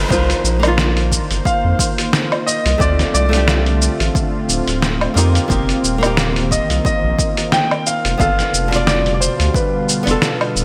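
An intimate grand piano carries the melody through lush chorus and digital delay in this wistful, smooth sunset chillout excerpt at 89 BPM in C dorian with a swung feel, over a fingerpicked flamenco guitar with delay, a deep, round analog bass, a gritty, tape-toned sampler-style kit of hi-hat, shaker, fat snare and woodblock with gated reverb, a punchy overdriven electronic kick that drops out at 9.7 seconds, and a thick, detuned sawtooth pad that enters at 1.0 seconds, all moving through Cm11, Dm7, F7sus4 and G7 in a bright 1980s-style digital production set in a moderate, lush hall reverb.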